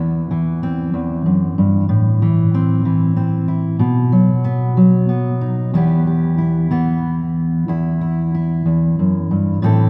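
A slow, straight 6/8 pulse moves at 62 beats per minute, counted in dotted quarters, giving this brief folk passage an unhurried, rocking gait. A single fingerpicked steel-string acoustic guitar carries everything alone, ranging from E2 up to A4 in E minor, tuned slightly under standard pitch. Its dreadnought tone is full-bodied and sits up front, intimate and close even as a long church reverb blooms around it, lending the playing a haunting, cavernous glow. The harmony opens on C/E and moves through Am and B, then shifts at 5.7 seconds to Em, settling onto a lingering Emadd9 at 7.7 seconds. Cut from a longer piece, the fragment ends at 9.9 seconds, leaving a haunting sense of reflection hanging in the resonant hall.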